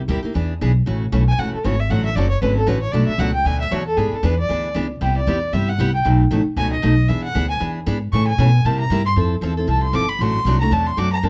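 Charming and swinging, this short acoustic string-swing excerpt in A major races along at 231 BPM, with a woody, thumpy pizzicato upright bass on gut strings opening the groove and a dark, picked steel-string acoustic guitar with old strings supplying the accompaniment. From 1.3 seconds a bowed violin takes the solo, biting and earthy with light vibrato and a smooth top, weaving over a lively chord progression that moves through E7, Dmaj7, Cmaj7 and Fmaj7. All three parts sit up front in a close, detailed recording with light reverb.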